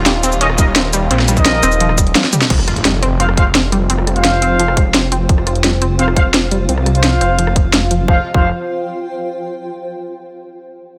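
Dark and aggressive, this excerpt of technical drum and bass drives at 172 BPM in a straight 4/4, opening mid-drop on an Ebadd9 chord before shifting to F5 at 2.5 seconds. A snarling, growling distorted saw bass sits up front throughout, tube-saturated and sidechain-pumped beside the tight electronic kick, while a layered kit with a cracking snare, hi-hat, rim click, cabasa, toms and crash drives alongside it, capped by a drum fill just before the change. A brief nasal, wobbling vowel-sweep bass surfaces on a low Eb, and lush, punchy unison pluck arpeggios with delay and mellow, distant brass stabs fill the midrange. Bowed strings hold smooth chords in the background at the start, then give way as an electronic impact arrives at 2.5 seconds, when filter sweeps run across the saw bass, the arpeggios and the brass. From 3.4 seconds a cloudy, evolving granular pad drifts in, blurring the upper register and carrying through to the close.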